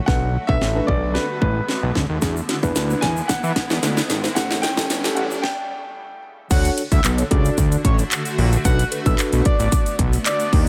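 A straight 4/4 house pulse at 112 BPM drives this upbeat, euphoric dance-pop excerpt in D major, with a punchy kick, cracking snare, metallic hats, handclaps and crash from an up-front, tape-tinged drum kit, plus a grainy egg shaker sitting distantly in the background from 2.2 s. A fat, detuned sawtooth analog bass holds the low end up front, saturated and sidechain-pumping, while a mellow tine electric piano plays clean, direct chords. A shimmering, ethereal pad with octave-up sparkle, chorus and its own reverb breathes behind them, also pumping. The opening build-up moves from Bm7 through E7 to A7, with a drum fill, a filter sweep, a very quiet riser, and a clear, intimate concert grand carrying the melody through delay, its action noise audible. After a stop at 5.4 s, the drop lands at 6.5 s on Dmaj7, where a chorused, vibrato-laden analog lead with a sub octave takes over the tune through delay, all in a dry, filtered mix.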